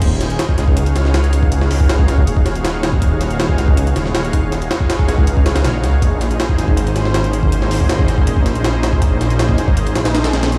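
A gritty, overdriven jungle sampler-style drum kit sits up front in this dark, nostalgic drum and bass drop, its pitched-up breaks driven by a thumpy kick, a high-tuned snare, hi-hat and crash cymbal. Alongside it, a thick, detuned saw bass, also up front, sustains with a beating, menacing saturation, while a lush chorused unison pad holds slow-blooming chords that move from Ebm11 to Bbm11 at 6.0 s. The whole passage is bathed in a large studio reverb that evokes a big sound system in a bare room, cut from a longer piece.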